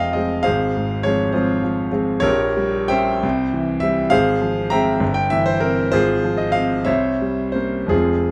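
Bittersweet and stormy, this brief excerpt of a romantic character piece for solo piano unfolds in F minor and 6/8 with a rubato feel, its dotted-quarter pulse drifting between 54 and 71 BPM. A clear, intimate grand piano sits up front across its range from F1 to Bb5, the action noise audible, moving through F minor and diminished harmonies before settling on a tense C7b9 at 6.9 seconds. A moderate studio reverb gives the natural tone a sense of space.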